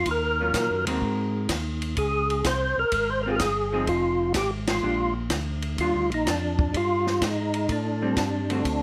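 A fat, lightly overdriven tonewheel organ carries the melody through a slow rotary speaker with chorus vibrato, third-harmonic percussion and key click, over a clean, full organ bass, a dark, picked hollow-body electric guitar accompanying from 0.4 seconds, and a dry cocktail kit with punchy kick, high-tuned snare and dusky cymbals, all set in light reverb in this greasy, swinging soul jazz organ trio excerpt, with a band accent at 4.6 seconds.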